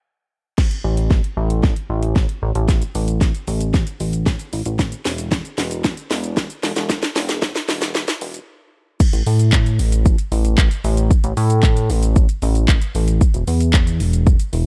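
The sound is dark and dry, with little reverb and a high-pass filter shaping the production. This confident, driving dance-pop excerpt moves at 114 BPM in a straight 4/4. An electronic house drum kit enters at 0.6 seconds, layered and up front with a punchy kick, cracking snare, metallic hi-hats, handclaps, shaker and crash cymbal. A chorused synth bass joins at 0.8 seconds, a retro, glossy and nasal blend of pulse and sawtooth waves with pulse-width modulation, a fast-attack filter pluck and sustained, evolving tones ranging from E1 to A2, pumping under sidechain compression. A long build-up with a drum fill and a filter sweep gives way to the drop at 9.0 seconds, where the groove hits in full.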